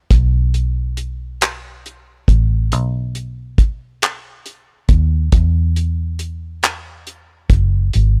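A cloth-damped, thuddy drum kit of kick, hi-hat and handclaps sits up front, its tight kick and rolled-off top giving this slow six-eight R&B groove at 46 BPM a late-night, yearning mood. Alongside it, also up front, a vintage muted fingered electric bass plays from 0.0 seconds, its amped, foam-muted tone round and dark as it moves between F#1 and E2. The sound is dry and close, with little reverb, in a brief cut from a longer piece.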